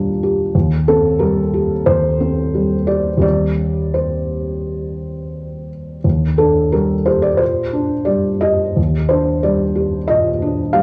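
Neoclassical minimalist piano in C dorian, this short excerpt carries a wistful, melancholic mood at 87 BPM in 4/4, with uneven beats and a rubato feel that let the time breathe. A felt-muted upright piano plays solo from 0.0 to 10.8 seconds, ranging from Eb2 to F5, its tone soft, dark and intimate through thick felt. The notes have a short sustain, and the audible action noise of the instrument sits close and up front in the sound. The harmony moves from Ebmaj7 to Cm/Eb at 0.5 seconds before returning to Ebmaj7 at 6.0 seconds. Light reverb and a small room ambience frame the playing, and the cassette home recording lends the whole a modest, private character.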